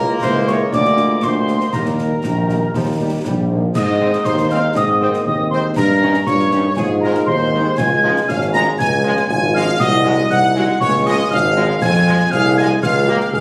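In a straight, steady two-beat march feel, this spirited, rousing wind-band excerpt strides forward in a military style, cut from a longer piece. A mellow trumpet section carries the melody with light vibrato and a close-miked, classical sound, while an airy, tongued piccolo with vibrato and a rolled-off top floats a second line high above. A vintage-toned euphonium adds another second line from the background, and a distant, roomy French horn section fills in quiet, tight accompaniment alongside brilliant, close-miked trombones holding sustained chords. A punchy tuba sits up front on the bass, and from 0.2 s a concert snare drum, concert bass drum and clash cymbals keep time with a close, dry sound and dark cymbals. The band plays in a booth-like space heard from a phone in the room with added studio reverb, and after a brief opening the harmony moves at 3.7 s into a longer passage that turns toward Db and Fm before breaking off.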